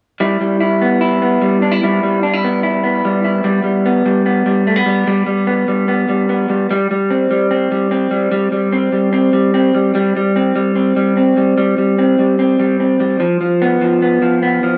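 A dark, warm production with moderate studio reverb frames this youthful, nostalgic indie pop excerpt in straight 4/4, where a solo electric guitar through a small old amp sits up front from 0.2 s, slightly broken-up, lo-fi and compressed under a lush chorus, moving from G6 to G and then Gsus4 before the harmony falls away at 13.2 s and the guitar stops at 14.8 s.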